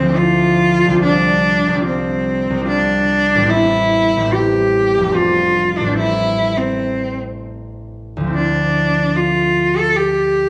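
A bowed cello with rich vibrato carries the melody up front from the start, its tone focused yet slightly distant, while a concert harp rings out fingerpicked, ringing accompaniment from its low register beneath it. This hazy, mysterious impressionist duo moves at a rubato 73 BPM in 3/4, in D dorian tuned to A4 = 441 Hz, drifting through colorful extended chords from Dmadd9 to Dm9. A wet recital hall reverb surrounds this 10.5-second excerpt cut from a longer piece.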